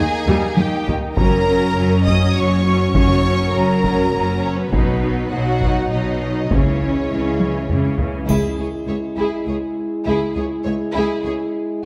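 Epic orchestral film score in 3/4 at 101 BPM, relentless and dark in C# dorian, where a lush, focused violin section carries the melody over a smooth second violin line, background violas, a woody double bass section and a rich cello section, while distant, roomy French horns hold sustained chords and a taiko ensemble struck with heavy sticks drives from 0.3 seconds with fills, joined at 8.3 seconds by articulate timpani and a triangle, all within a wet scoring stage reverb on this cut from a longer piece.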